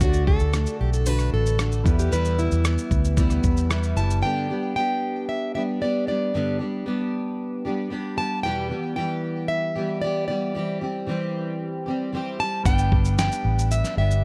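Acoustic pop in G major at 114 BPM in a straight 4/4, this carefree, heartfelt excerpt opens on D and Em before settling into G, Em and C/E. A fingerpicked, full-bodied jumbo steel-string acoustic guitar carries the melody up front with a touch of delay, while a second fingerpicked acoustic guitar, double-tracked, plays accompaniment underneath for the whole 14.2 seconds. A clear concert grand piano sits in the background with audible action noise, deep bass and long sustain. It plays alongside a round, foam-muted vintage electric bass and a gritty, compressed sampler-style drum kit with thumpy kick, medium-tuned snare, rim click and shaker. These three parts drop out at 4.2 seconds, leaving the two guitars alone, and return near 12.7 seconds as the chords come back to G. Studio reverb gives the mix a gentle sense of space.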